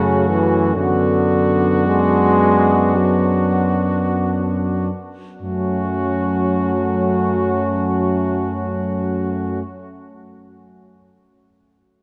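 Heard together from 0.0 s, this hymn-like classical brass band passage, cut from a longer piece, moves in free time in F# minor with an elegiac, yearning mood, slowing through its first 5.4 seconds as a clear, present cornet carries the melody with light vibrato over a warm flugelhorn second line and a bright solo trombone, both distant and roomy in the background, a tight trombone section with light vibrato, and a mellow tuba bass up front, the ensemble bathed in a long church reverb and a dark production as the harmony moves from F# minor to B minor over F# and settles back on F# minor at 5.4 seconds.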